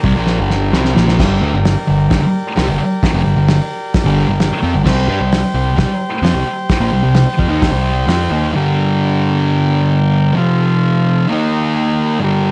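A straight 4/4 pulse at 131 BPM drives this raw, gritty garage rock passage in G minor, cut from a longer piece, with a drum fill running from 0.3 to 1.2 seconds. The cloth-damped kit sounds thuddy and muffled, with a fat snare, tight kick and dark crash and hi-hat, saturated and up front before it stops at 8.2 seconds. A thick, double-tracked fuzz guitar drives the riff at the front of the mix, while a growling picked bass, bright and overdriven, holds the low end until 8.5 seconds. Beneath them, a vintage combo organ holds buzzy, clean sustained chords as the harmony moves from Gm to C5, back to Gm, then through F and Eb, with guitar and organ carrying the final stretch by themselves. Cassette tape and a moderate club reverb give the whole take a rough, close-quartered character.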